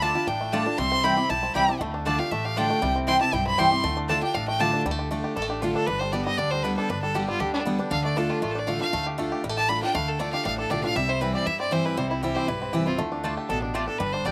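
Lonesome and driving, this bluegrass passage in D dorian races along at 236 BPM in a straight 4/4, cut from a longer piece. A clear, up-front fiddle carries the melody with light vibrato and an airy bow, its intense, boxy tone touched by slapback echo, and it takes a solo through the opening 4.9 seconds. Beneath it, a bright, full-bodied steel-string guitar picks the accompaniment with audible finger squeak, while a twangy, percussive banjo played with fingerpicks spins arpeggios, also carrying slapback echo. A woody mandolin adds double-string stabs in the first 4.7 seconds and returns at 13.2 seconds, and a growly, thumpy upright bass plucks the low end. The chords move between Dm and C before a G arrives in the second section, and the dry outdoor recording carries little reverb.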